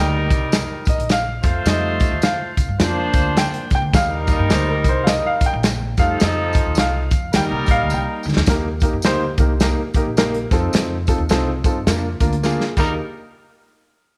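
Uplifting and joyful, this uptempo 1960s-style soul piece swings in 4/4 at 106 BPM in Eb major, with a grand piano of long sustain taking a solo for the first 8.5 seconds. Beneath it, a woody, thumpy pizzicato upright bass and an airy, polished acoustic drum kit with a punchy kick drive things along, adding short drum fills, while a jingly tambourine sits in the background. A clear, tight vintage horn section with slapback echo plays a second line until 8.2 seconds and returns briefly at 12.8 seconds, all set in a small room with light reverb.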